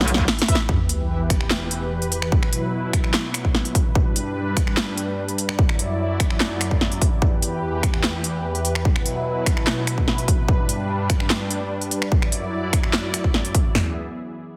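Aggressive and menacing, this heavy wobble dubstep fragment in E minor moves at 147 BPM with a half-time feel, opening on a clear, background brass ensemble stab with tape echo over a drum fill before a sub drop hits at 0.7 seconds, where a lush, thick, detuned sawtooth unison pad with chorus, phaser and sidechain pumping takes over the chords, while two punchy, tape-warm big-room dance drum kits (one with finger snaps, handclaps, crisp hi-hat, ride and snare, the other with kick, snare and toms) stay up front in a heavily compressed, radio-like mix with light digital reverb.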